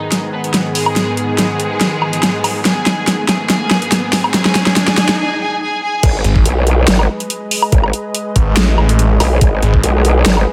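A half-time 4/4 groove at 142 BPM with a light swing drives this menacing, heavy wobble dubstep fragment in G# minor, where a distant, vibrato-rich bowed violin section carries the melody through a low-pass filter and tape echo over a lush, detuned supersaw pad pumping under sidechain, while an up-front dubstep kit with a huge snare and bright hats plays a fill beneath a background riser before a short break, and at 6.0 s the drop lands with a knocking electronic kick and a wobbling, formant-filtered growl bass with chorus and overdrive, joined a moment later by a snarling, distorted unison saw bass with a moving notch.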